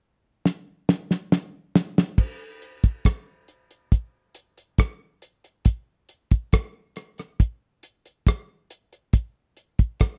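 A drum fill opens this tender, romantic reggae fragment at 69 BPM in a straight 4/4, with the cloth-damped, thuddy kit entering at 0.5 seconds with a fat snare, tight kick, rim clicks, hi-hat and dark crash cymbal before a new section begins at 2.2 seconds, its rolled-off, up-front sound captured in a close, dry 1970s-style studio with light reverb.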